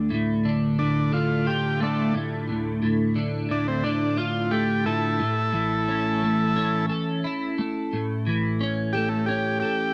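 Mysterious and hypnotic, this brief excerpt of straight 88 BPM rock in D minor sets a clean, compressed, up-front twelve-string electric guitar riff, flanged and double-tracked, under a buzzy, overdriven combo organ melody with light vibrato and tape echo that enters at 0.8 seconds and carries a solo, all in light digital reverb as the harmony moves from Dm to A at 5.2 seconds.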